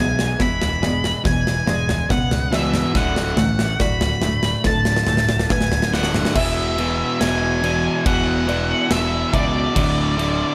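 Post-rock at 70 BPM in a straight 4/4, this cinematic, euphoric passage is cut from a longer piece and moves between E and D6 chords. Up front, a dark octave-fuzz lead guitar carries the melody with distortion and tape echo, while a big acoustic rock drum kit with bright cymbals, a punchy kick, a medium-tuned snare and toms drives a build-up and a drum fill across the first 6.4 seconds. Beneath them, a pair of distorted, picked electric guitars grind out a low riff in the background, and an overdriven picked electric bass adds a round, direct bottom. A clean, fingered semi-hollow electric guitar plays hollow-body arpeggios through tape echo until 6.4 seconds, when the music shifts into its second section. A felt-muted upright piano adds intimate, mellow arpeggios with audible action noise and tape echo, and a very quiet pedal steel guitar, twangy and played with fingerpicks, holds sustained chords with slide and volume swells. 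The whole sits in a moderate booth ambience.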